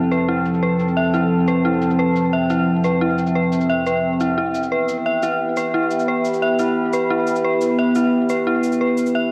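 Dark technical drum and bass, tense and aggressive, heard here as a short cut from a longer piece. A deep, moody analog pad sits up front with sustained chords built from detuned square and sawtooth tones over a sub octave, its slow attack and long release giving it a brooding weight as the harmony moves from F to Em at 4.4 seconds. Beneath it, a warbling, tape-like pad adds a nostalgic, lo-fi haze, mellow and detuned, coloured by chorus, its own reverb and a phaser. An eerie FM bell, inharmonic and vintage in character, plays arpeggios with a fast attack and decaying tail, softened by a low-pass filter and trailed by delay. A quiet, overdriven cabasa, electronic and layered and re-recorded in a small room, adds a faint percussive grit, all set within a moderate, lush hall reverb.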